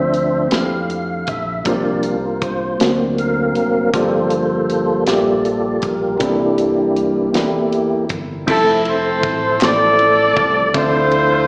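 Soulful and reverent, this slow gospel passage moves in a straight 6/8 at 53 BPM in F major, cut from a longer performance and heard as a live gig through the venue's PA, with a small-speaker character and a moderate club reverb. A percussive tonewheel organ sits up front from the start and carries a solo through the opening 8.5 seconds, its dark, round tone marked by key click, third harmonic percussion, chorus vibrato, a fast rotary speaker and plate reverb. Beneath it, a grand piano with slapback echo stays in the background, a round fingered electric bass holds the low end, and an acoustic studio drum kit with a punchy kick, medium-tuned snare and rolled-off top plays across hi-hat, ride and crash. The harmony drifts through rich chords such as Dm9, C9sus4, D7alt and Gm9 before settling on Fmaj7 at 8.5 seconds, where a mellow, jazz-style horn section enters up front with vibrato and slapback echo to take the melody. 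A brief burst of hollow, close group handclaps lands in the background at 9.6 seconds, shortly before the passage returns to Dm9 at 10.7 seconds.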